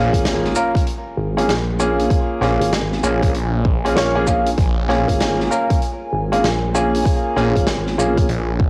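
A playful, swaggering glitch hop excerpt with a swung feel, where clear, up-front grand piano stabs treated with tape echo and sidechain pumping ride over a swirling phased detuned saw bass and a nasal, wobbling vowel-sweep bass, driven by a punchy electronic kick and a big-room rock kit's hi-hat, shaker and snare, while a very quiet sub drop marks the opening impact and a moody analog pad fades in from 1.0 seconds, all coloured by the character of a home cassette recording.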